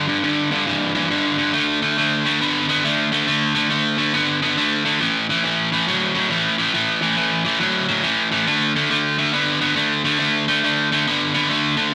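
Blues at 139 BPM in D major with a swung 4/4 feel, this laid-back, swaggering 11.9-second fragment of a longer piece features a lone picked electric guitar through a cranked stack, bright and overdriven and set up front in moderate studio reverb, playing power chords on G, D and A in a low-to-middle register.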